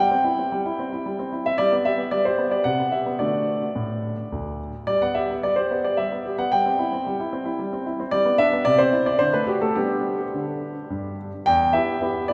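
In a three-four of about 104 to 114 BPM with rubato, this cheerful, graceful classical-period sonatina excerpt features a solo concert grand piano, clear, natural and up front with deep bass and long sustain, ringing into a cathedral's long, wet reverb as it moves between C over G, G, Cmaj7 and D before reaching E minor at 11.5 s.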